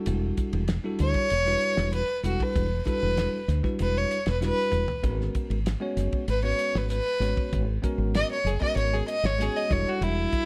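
A light reverb frames this slick, funky slice of electric jazz fusion, where a close, airy-bowed violin enters at 1.0 seconds to carry the melody with light vibrato and a slapback echo. Beneath it, a bell-like tine electric piano comps on Em11 and G#m11 chords, a round, hollow-toned fretless bass sits up front, and a damped 70s drum kit with a fat snare and dark cymbals keeps a straight 4/4 groove. The drums add a fill from 4.4 to 5.0 seconds, leading into the harmony's shift.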